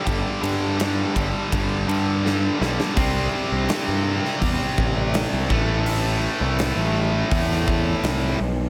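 Bittersweet and anthemic, this short cut of quiet-loud alternative rock moves at 83 BPM in a straight 4/4 in C major, with an up-front, double-tracked high-gain guitar riff grinding over a fuzz-soaked, overdriven picked bass. A huge arena drum kit fills a pumping hall with bright cymbals, a medium-tuned snare and a punchy kick, and a drum fill from 2.2 to 3.0 seconds launches the second section. The harmony moves from G5 to C5 and then to A minor, all set in light reverb and studio ambience.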